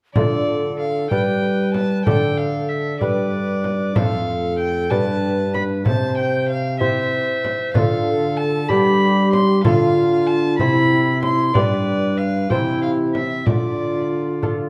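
A straight 6/8 pulse at 63 BPM carries this solemn, rustic renaissance-style consort dance in D dorian, tuned to A4 = 437 Hz, as a nasal, gut-string violin with light vibrato and a distant, reedy edge plays the melody from 0.1 s, an airy wooden tenor recorder with tongued chiff takes the second line, a delicate fingerpicked lute with double strings provides the accompaniment, a close-miked classical-style trombone supplies the bass, and a small, bright frame drum struck with hard hands adds compressed, saturated percussion, all within a wet recital-hall reverb in this passage cut from a longer piece.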